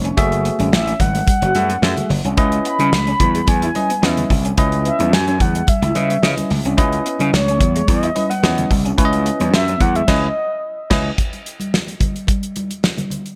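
Funky and slick, this early-eighties boogie funk excerpt in C# minor moves at 109 BPM over F#m9 and C#m9 chords, with a gritty overdriven slap bass and a damped 70s drum kit, fat-snared and gated, up front, a bell-like tine electric piano, a twangy, slightly broken-up guitar riff and vintage congas in the background, and a mellow, warbling horn-like synth lead carrying the melody, before a band accent at 10.1 seconds hands the last two seconds to drums and congas alone.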